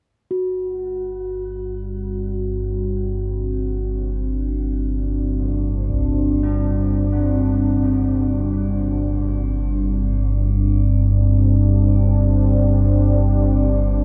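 Unsettling and dark, this free-time dark ambient drone, cut from a longer piece, opens with a ringing bronze singing bowl on F#4 at 0.3 seconds, soon joined by a nasal, evolving analog drone in the low register with lush chorus and a filter sweep, then a deep, detuned ambient pad holding sustained chords from 1.9 seconds, bathed in shimmer reverb. Old church bells with a clangorous, minor-third overtone drift in the background through tape echo, while a brief, very quiet hit from a saturated taiko ensemble lands near 5.9 seconds. A huge ambient reverb and a dark, warm production wrap the whole in a cavernous haze.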